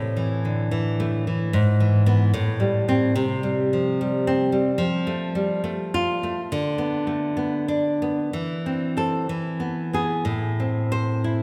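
This romantic solo classical guitar piece, cut from a longer work, unfolds in a passionate yet intimate 6/8 at a rubato 60-75 BPM, settling into A minor from 3.2 s. The fingerpicked nylon-string guitar sits up front with a full-bodied, deep tone and audible finger squeak, moving through chords such as E/G#, F and Bm7/D before resolving to Am as a new section begins at 10.3 s. A long, wet church reverb surrounds the guitar and lends the performance a spacious, concert-hall glow.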